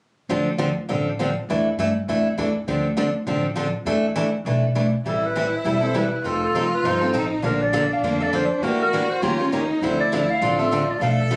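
Acoustic string swing in the jazz manouche style at a fiery, bittersweet 202 BPM, this excerpt opens with a bright, freshly strung picked steel-string guitar and a woody, thumpy pizzicato upright bass on gut strings. At 5.0 seconds a clear, focused bowed violin enters up front with vibrato, followed at 5.1 seconds by a mellow, vintage-toned clarinet that carries the melody with subtone, light vibrato and scooped notes, all heard through a moderate club reverb and the compressed ambience of a phone recording in the room.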